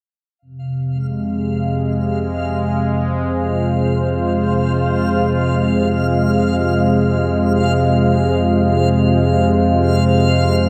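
A sweeping, resonant pad stands up front in this cavernous dark ambient drone, holding bright sustained chords from 0.4 seconds with detuned sawtooth tones, an airy noise layer, a filter swell and chorus that keep it evolving. At 0.7 seconds a deep, rumbling drone enters beneath it, blending triangle and sawtooth waves into an ominous, dark foundation with its own built-in reverb. From 1.0 seconds a reversed, granular texture hovers high above, its detuned triangle tone soft, swelling and dreamy, sitting further back in the mix. The whole passage rests on a single minor chord and is cut from a longer piece. A wet cathedral reverb with a long tail surrounds the recording, leaving a desolate sense of vast, empty space.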